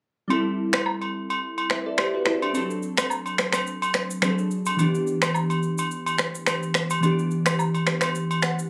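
Glassy digital keys carry the accompaniment in this smooth, sultry afrobeats clip, their full-bodied, sine tone shaped by a fast attack, a dark decay, a filter sweep and chorus as they comp through Am7, D7 and Em7 with a swung 4/4 feel. Agogo bells and woodblock enter with the keys at 0.3 s, sitting up front with an acoustic, small-room character. Electronic finger snaps, rim click and shaker join at 0.7 s, layered, produced and overdriven, also placed up front. The keys close the passage with a brief fill at 8.2 s. The recording carries moderate studio ambience and a club reverb, captured on a phone in the room, and is cut from a longer piece.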